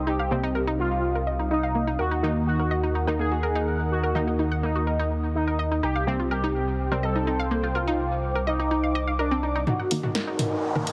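Heavily compressed and lightly reverberant, this driving, dramatic melodic techno excerpt at 125 BPM moves between C minor and E-flat minor. A dark, rumbling detuned saw bass sits up front under a sweeping resonant pad, brassy chorused synth stabs, gritty analog pluck arpeggios with tape echo, and a juicy resonant polysynth melody carried by digital delay. At 9.7 seconds a build-up begins as filter sweeps move across the pluck, polysynth and stabs and a punchy, overdriven deep house drum kit of hi-hat, snare and toms enters, joined by an electronic riser at 10.1 seconds.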